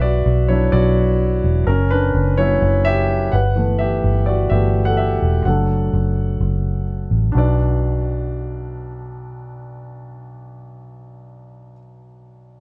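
In a straight 4/4 at 127 BPM, this earnest, bittersweet piano-driven pop passage in B minor pairs a polished grand piano with long sustain and plate reverb against a dark, round, foam-muted vintage electric bass, both sitting up front in a lightly reverberant studio room as the harmony moves from Bm through F# and G6 to D/F# and returns to Bm at 7.3 s, with the bass stopping at 11.7 s and the piano ringing on to 12.6 s.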